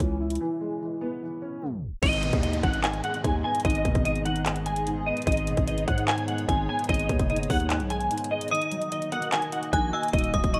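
A dark baby grand piano with audible action noise, a growling 808-style bass and a trap drum kit with a hard-clipped kick and metallic hats open this menacing half-time trap cut with a break and a tape stop, before a clean, up-front semi-hollow electric guitar melody, a hollow, airy pad and a background downlifter enter at 2.0 seconds, and a ringing, inharmonic FM bell with digital delay joins at 8.5 seconds as the kick drops out, all set in bright 1980s-style digital production.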